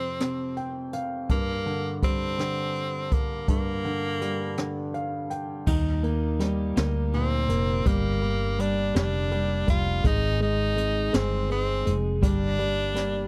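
An edgy tenor saxophone carries a forceful, jazz-inflected melody with vibrato over a clear, polished grand piano at the opening, and the piano's intimate action noise is audible up front. Brushed jazz drums join almost at once, with dark cymbals, a high-tuned snare, rim clicks and a boomy kick in a natural-sounding studio room. This tender, heartfelt six-eight pop ballad moves slowly at 55 BPM in dotted quarters, and the piano adds two short fills in its opening stretch. At 5.7 seconds a new section begins: a round, hollow-bodied fretless electric bass steps up front, and a bright, twangy twelve-string electric guitar plays clean, picked arpeggios in the background. The harmony moves through Eb, Gm and Ab before settling back on Gm. The close, dry, 1970s-style studio sound keeps the saxophone punchy and present in this fragment of a longer piece.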